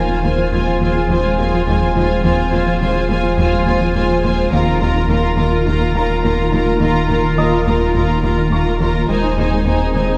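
Tense and vast, this cinematic hybrid of orchestra and electronics sets a distant studio violin section's vibrato melody over a lush second violin line, smooth violas and a rich cello bass, while a round sine sub bass anchors the low end, a warbling, lo-fi tape-like pad with chorus holds nostalgic chords, a juicy, squelchy filter pluck runs bright arpeggios in the background, and a very quiet, boxy grand piano with audible action noise adds texture, all moving from Fm/Eb to Ebsus2 and Ab/Eb inside a wet scoring-stage reverb heard from further back in the room.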